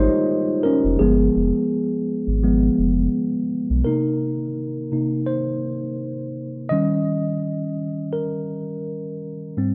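A rough home-demo mix with light reverb and a digital ambience opens on a worn, slightly out-of-tune tine electric piano, up front and softened by cassette-tape colour and a low-pass filter, in a cosy, mellow lo-fi hip hop groove at 84 BPM in 4/4 with a gentle 16th-note swing. A deep, sine-like sub bass with an octave sits up front beneath it until 3.8 seconds, moving over chords such as Abmaj7 and G7b9. The electric piano carries a featured solo from the start, continuing from 3.9 seconds through the second section over Cm7 and Eb7.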